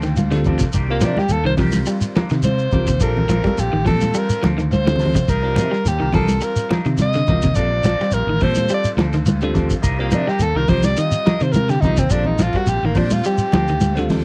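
Hypnotic and defiant, this afrobeat excerpt rocks between Bbmaj9 and Cm9 as a breathy, edgy alto saxophone solos up front with scooped notes, entering at 0.9 seconds. Underneath, a round fingered electric bass, close dry congas with soft hands, a grainy shekere and a cloth-damped, thuddy drum kit with a fat snare and dark cymbals hold the groove, the kit sitting in the background and adding a short fill near 4.9 seconds. A slightly broken-up electric guitar picks low arpeggios through analog delay, a dark envelope-filtered guitar stabs through spring reverb, and a bell-like tine electric piano comps with phaser after an opening fill, all caught in a lightly reverberant home cassette recording.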